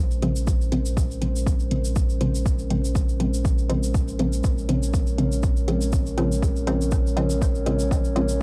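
Dub techno at 121 BPM in Bb minor, this meditative, hypnotic excerpt from a longer piece rests on a single Bbm9 chord, with a detuned, chorused analog pad and a clean sine sub bass pumping under the sidechain while muted sawtooth chord stabs, treated with phaser and dub echo, ride a filter sweep over an overdriven, up-front kick, metallic hi-hats and a grainy tube shaker, all captured in a dry, gritty hardware recording dusted with vinyl crackle.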